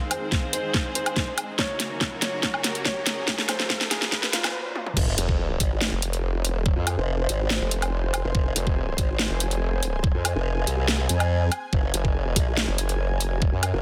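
Two saturated formant-sweep wobble basses, one pulse wave and one sawtooth, both with chorus and overdrive, crash in up front at the drop, at 5.0 and 5.2 seconds, in this heavy, aggressive half-time dubstep excerpt at 142 BPM in F phrygian. Before that, during the build-up and drum fill, a dark, mellow baby grand piano with delay and audible action noise carries the melody over lush bowed strings, while a riser and sub drop and a cloudy granular pad sit in the background. Knocking electronic kicks and a dubstep kit with a huge snare, metallic hats, toms, crash and woodblock drive the track, all within a dense, heavily limited master and light digital ambience.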